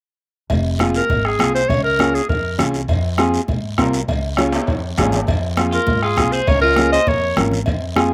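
Cumbia in F minor at a driving, danceable 201 BPM, with a woody pizzicato upright bass, a soft-beater bombo, distant ringing cowbell and timbales with slapback echo, a raspy guiro, a dark thumb-plucked nylon-string guitar, and high-tuned congas in the background carrying the groove while a smooth, classical-style clarinet takes the melody up front from 1.0 seconds; after a drum fill at 4.4 seconds, a twangy, slightly broken-up electric guitar adds a second line from 5.7 seconds, all in a dry, open-air sound.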